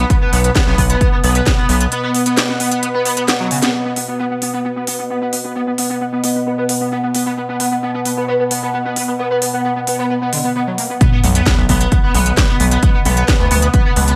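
At a straight, driving 132 BPM in 4/4, this industrial peak-time techno cut runs a screaming, guitar-like overdriven synth lead riff with dub echo over a resonant sweeping drone and cracking overdriven drums in a stone room, as the heavy kick and aggressive sawtooth bass drop out at 1.6 and 1.9 seconds and crash back from 11.0 seconds alongside a sub drop on a B minor chord.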